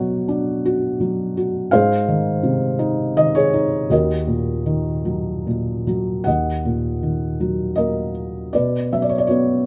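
A felt-muted upright piano opens alone, playing a lyrical classical line in a melancholic, reflective mood. It moves in 3/4 at roughly 72-86 BPM with a rubato feel, and the tuning sits at A4 = 441 Hz. The thick felt gives the instrument a soft, dark, intimate tone, and the close, detailed microphones place it up front with a natural character in light reverb. The harmony passes from Bmadd9 to Ab and Ebm before returning to Bmadd9 at 8.5 seconds, as the opening section repeats from 6.3 seconds. Spanning Eb2 to F#5, the piano carries this short cut from a longer piece on its own through 9.7 seconds.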